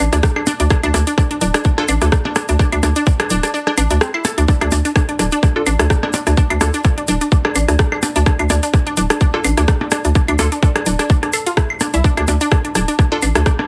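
Swung 16ths at 127 BPM in 4/4 set up this cool, sparse minimal techno excerpt in D minor, where a tight, up-front electronic kick drops out at 3.5 s, a hollow, bouncy FM bass pumps under sidechain, a juicy, squelchy resonant blip pluck with chorus, sidechain pumping and tape echo carries the riff, a booming analog drum machine adds metallic hats and rim clicks, electronic claves and percussion blips flicker through digital delay beside a grainy tube shaker in the background, and a crisp, phased wavetable chord stab sounds at 1.8 s and again from 5.6 s, the whole mix squeezed into a heavily compressed radio sound with light reverb.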